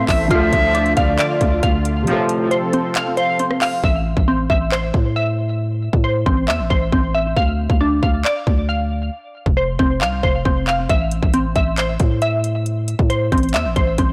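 This brooding, hard-hitting trap excerpt in A minor opens at 136 BPM in a half-time feel with a breathy, vibrato-tinged flute, a dark, boxy grand piano with audible action noise, an airy, evolving sawtooth pad, a glassy, detuned pluck playing arpeggios and a growling, buzzy 808 bass. Up-front trap drums with a hard-clipped kick, metallic hats, handclaps and rim clicks arrive almost at once, while a vintage brass section adds faint stabs in the background. After the opening bars the flute, piano and pad fall away, leaving the crystalline pluck, with its chorus and delay, over the 808 and drums as the chords move from Dm and F to Am. The kick drops out from 2.1 to 3.8 seconds and the hats from 3.8 to 10.9 seconds, and the whole recording sits in a small, lightly reverberant room, blown out with heavy overdrive.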